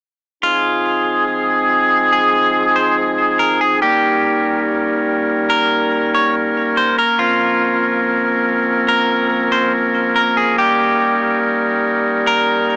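A half-time hip hop pulse at 142 BPM in 4/4 carries this ethereal, spacious fragment in F minor, cut from a longer piece. A clean electric guitar plays the melody from 0.4 s between F4 and Db5, its bright, twangy picked tone sitting up front and trailed by tape echo. Beneath it, a woodwind section holds sustained chords from F3 to Bb4: a warm, classical-style ensemble with light vibrato, a punchy attack and a smooth top, also placed up front. The harmony moves through Fm7, Eb7, Bbmadd9 and back to Eb7, with both parts playing together until 12.8 s. A moderate small-room reverb adds a touch of air, while the dry, gritty hardware character gives the recording a small-speaker sound.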